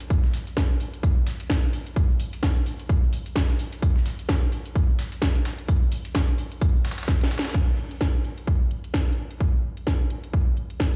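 The recording sounds as if it were played through a big sound system in a bare room, with a large studio reverb wrapping the drums in a roomy, digital ambience. This is a bouncy, swaggering house groove in 4/4 with a swung sixteenth-note feel, cut from a longer piece and built entirely from drums. Up front, an overdriven electronic kick delivers a punchy thump, while a house drum kit adds crash cymbal, hi-hat, shaker and a cracking snare, also overdriven and re-recorded in a large room. In the background, a compressed, sampler-style soul kit brings a gritty, fat snare, hi-hat and tambourine, its hats and percussion filtered and pumping. A drum fill and a band accent lead into a new section at 7.5 seconds, where the dusty sampler kit drops away and the house kit and kick carry on to the end.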